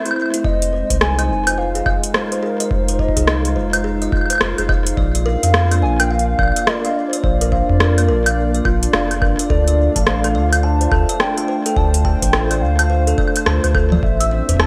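A booming analog drum machine, overdriven and soaked in gated reverb, drives this eerie, glitchy IDM piece at 106 BPM with swung 16ths, its congas, metallic hi-hat, rim click and woodblock sitting up front beside a deep, overdriven electronic kick and a round sine sub bass. A hollow, flute-like pad holds chorused chords from the start while a woody kalimba plays arpeggios through 12-bit sampler grit, a low-pass filter and digital delay. From 0.4 s a warbling, nostalgic lead with vibrato and a detuned, wave-folded tone carries the melody over Fm7, Bb, Dm7 and Am, all set in a lush hall reverb with bright 1980s-style digital production.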